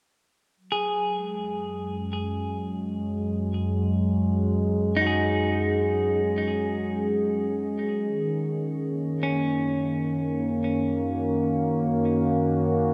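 Drenched in cathedral reverb, this luminous, serene ambient passage in F# major at 64 BPM unfolds in a vast, echoing space, cut from a longer piece. A smooth, warbling analog pad with chorus holds sustained chords up front from 0.6 seconds, moving from F#sus2 to D#m7/F# at 8.1 seconds while a filter sweep shapes its detuned, vintage tone. A bright, twangy clean electric guitar picks delayed arpeggios until 10.5 seconds, and a deep, ominous rumbling drone on F#2 settles in beneath from 1.7 seconds.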